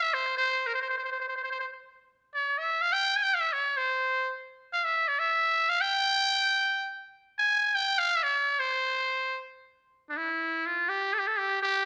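Festive yet stately, this short Persian extract in a straight 6/8 features a lone trumpet with a metal mute, played up front as the solo voice, with a buzzy, raspy and punchy tone. A slapback echo trails the horn, and close, detailed microphones in a lightly reverberant room capture its grit. Around 10.2 seconds the line moves into a new section before the clip ends at 11.9 seconds.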